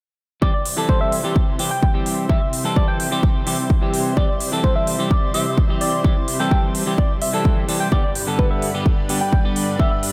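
A dreamy, reverb-soaked mix carries this anthemic, uplifting festival progressive house cut at 128 BPM in C major, where a punchy, up-front electronic kick and crisp, overdriven hi-hats (the hats entering at 0.7 seconds) drive a clean, fingered semi-hollow electric guitar with subtle chorus, sidechain pumping and tape echo, a thick, detuned unison pad with slow-attack sustained chords and its own pumping, and a round, keys-like FM synth lead with phaser, chorus, vibrato and tape echo, all moving from C to G at 7.9 seconds.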